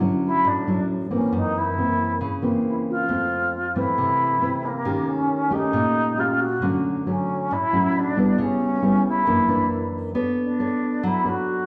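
Bathed in a wet large-studio reverb and heard from further back in the room, this relaxed, sunny bossa nova fragment runs about 11.7 seconds, cut from a longer piece. A pure, expressive alto flute carries the melody in its low register with tongued notes and vibrato, while a dark, thumb-plucked classical nylon-string guitar accompanies throughout. Both sit up front as the harmony moves from Dmaj9 through colorful chords like F#7#11 and C#m7b5 before settling on Bm9.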